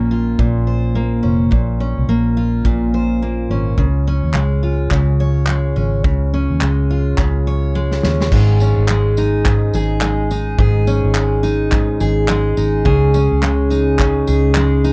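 A dark, dry production frames this sunny, easy-going acoustic pop excerpt in Ab major at 106 BPM with a 16th-note swing, where an up-front, full-bodied picked dreadnought steel-string guitar picks through Bbmadd9 and Db chords over a round, foam-muted vintage electric bass, while a natural country kit with a punchy kick, medium-tuned snare, handclaps, tambourine and shadowy cymbals enters at 0.4 seconds and plays a fill from 7.8 seconds into a second section that moves to Absus4 and Dbsus2.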